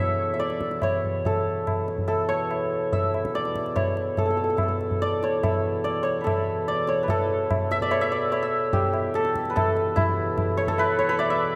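A shimmering, up-front santur carries the melody through tape echo in this introspective, solemn Hindustani classical fragment in seven, drawn from a longer piece. A reedy, breathing hand-pumped harmonium sustains a low, dark drone beneath it, and a high-tuned, close, dry tabla joins at 0.4 seconds. The pace quickens throughout, with a new section arriving at 7.1 seconds, all set in a moderate scoring-stage reverb.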